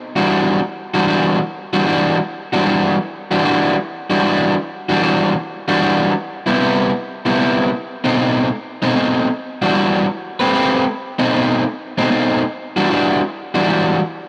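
Blues in a smoky, brooding swing, this short cut from a longer piece features a lone overdriven semi-hollow electric guitar, picked and up front with a hollow-body grit, playing from 0.2 to 14.0 seconds over moody Em9, Cmaj7 and B7b9 changes and bathed in a moderate plate reverb.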